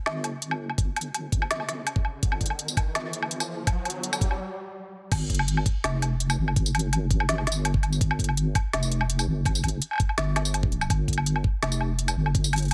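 A deep, wobbling bass and an organic electronic drum kit open this dark, spacious half-time drum and bass excerpt at 166 BPM in 4/4. The bass stays between F1 and G1 with a rounded sine-and-triangle tone, sustained and compressed, thickened by chorus and tube saturation. The tape-warm kit sits up front with a woody snare, smooth hi-hats, crash cymbal, tambourine and woodblock, and it is soon joined by a knocking electronic kick. An electronic riser builds from 0.9 s to 4.4 s, a brief stop follows, and the drop lands at 5.1 s. A digital ambience lends the arrangement its roomy, shadowed feel.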